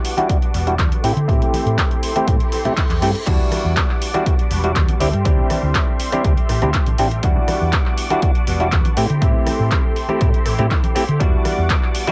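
Filtered disco house at 121 BPM in E minor, this groovy, funky 12-second cut from a longer piece rides a filter sweep across its whole length, with sidechain pumping on most parts. Up front, a twangy, percussive clav plays the accompaniment through a combo amp, colored by phaser and cassette-tape grit, while a punchy electronic kick, re-recorded in a small room, enters at 0.3 seconds. A dark, round hollow-body bass joins at 0.5 seconds beneath an analog drum machine of handclaps, hi-hat, rim click and crash, with tambourine and congas sitting close but in the background. Further back, a direct-recorded clean electric guitar picks a compressed riff through ensemble chorus, and a rich studio string section holds smooth, bowed chords with vibrato. A reverse cymbal sounds faintly from 2.5 seconds as the chords move through Em9, Am7 and D9sus4, all heard with little reverb in a home cassette recording.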